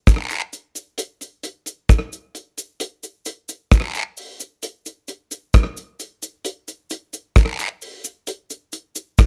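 A damped 1970s-style drum kit and a cabasa and guiro enter together at 0.1 s, setting up a sunny, warm reggae groove at 66 BPM in a straight 4/4. The drums sit up front with a dry, acoustic sound: a tight kick, hi-hat and rim clicks, all carrying a short slapback echo. Behind them, the cabasa and guiro sit much lower in the mix, with a close, maraca-like rattle and the feel of a group handclap. The whole passage is one steady section heard as a close, dry studio recording with very little reverb. The clip is cut from a longer piece and ends at 9.3 s.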